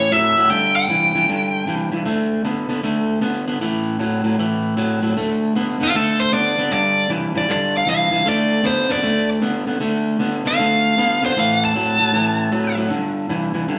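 Blues with a swaggering, gritty swing, where a twangy, slightly broken-up rhythm guitar holds a fingered riff throughout while a dark, overdriven lead guitar plays a brief melody at the start, then returns at 5.8 seconds for a picked solo, both up front in a small stone room with a live-band feel.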